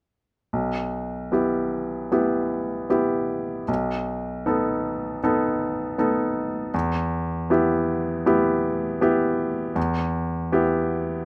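A bright baby grand piano, up front and intimate with audible action noise and short sustain, plays an elegiac, yearning classical accompaniment in E minor at a rubato 78 BPM, moving from Em/B through B7 back to Em between 0.5 and 11.2 seconds in this short, closely recorded excerpt with light reverb.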